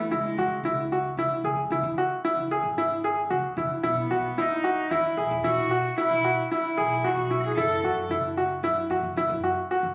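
A bowed cello and a pizzicato upright bass open this contemporary chamber piece together, with a clear grand piano joining almost at once in a stream of arpeggios. The music moves in an uneven 7/4 with a straight feel, and its mood is shimmering and restless. The single cello carries the melody up front in a rich, pure sul tasto tone, its soft attack giving the line a floating quality. Beneath it the bass sounds woody and thumpy, while the piano's worn, short-sustained notes sit close and clear over a C#m to Bsus4 to F#m progression. The cello falls away at 8.1 seconds, leaving piano and bass to carry on until the fragment breaks off at 9.9 seconds. A moderate scoring-stage reverb surrounds the players, and the phone recording made in the room adds a club-like ambience.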